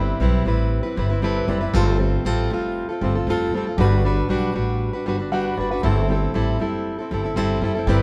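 A pizzicato upright bass sits up front, its steel strings giving a woody, bright low end in this sunny, easy-going acoustic pop excerpt. Beside it, a fingerpicked, plugged-in jumbo steel-string acoustic guitar is also up front, with a warm tone as it carries the accompaniment. Further back, an upright piano adds an intimate, polished layer with long sustain and audible action noise. The piano plays a brief fill from 5.1 to 5.8 seconds. The band plays straight 4/4 at 117 BPM, tuned to A4 = 438 Hz, moving through Cmaj7/G, F, Gmaj7 and Am. All three play live together in one room, with a moderate stone-room reverb that lends a natural sense of space.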